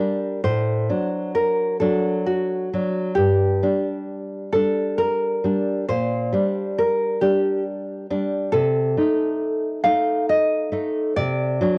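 A romantic duo for two nylon-string guitars, this short excerpt cut from a longer piece moves at a rubato 67 BPM in 3/4, set in G minor with a yearning, elegiac mood. One guitar carries the melody between F#4 and F5, its tone full-bodied and deep, while the second supplies accompaniment from G2 up to Eb4 with fresh strings and audible finger squeak. Both are fingerpicked, sit up front, and play throughout the 11.8 seconds, each carrying the character of cassette tape. The harmony drifts from D7/A through Gm and Gm/Bb to Adim/C, arriving on D7/C near 11.2 seconds. Light reverb and a small room ambience give the home recording an intimate, close feel.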